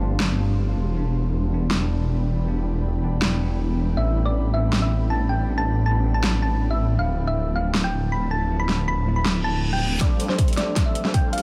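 A thick, detuned saw bass with chorus and sidechain pumping anchors this emotional, bittersweet half-time future bass in A minor at 159 BPM, beneath a bell-like tine electric piano, an ethereal airy pad under a filter sweep, a dubstep kit with a huge snare and metallic hats, and a round, thumb-piano-like synth pluck with delay carrying the melody from 4.0 s, until a reverse cymbal and riser usher in a build-up at 10.0 s with a punchy electronic kick, a drum fill and lush supersaw chords shaped by a filter sweep.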